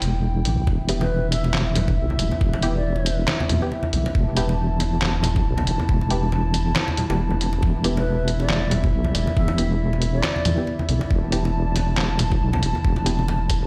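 Deep dubstep at 138 BPM in E minor, moving with a half-time, lightly swung feel that sits on a single E minor chord throughout this cavernous, meditative excerpt. A deep, wobbling bass of sawtooth and sine tones sits up front from the start, alongside a dark, nasal analog pad holding sustained chords with a slow attack and long release. The sampler-style drum kit, compressed and pitched down into a muffled thump, supplies handclaps, hi-hat and a medium-tuned snare, while a knocking, layered electronic kick and bright, saturated congas played with soft hands join at 0.7 seconds, the congas trailing dub echo. A muted, detuned chord stab with a filter pluck and short decay drifts in the background with chorus and dub echo. A breathy, end-blown ney sings a straight-toned, tongued line from 1.0 to 3.2 seconds and again from 8.0 to 10.7 seconds, its echoes hanging in the distance. The whole mix carries light digital ambience and the stony reverb of a big sound system in a bare room.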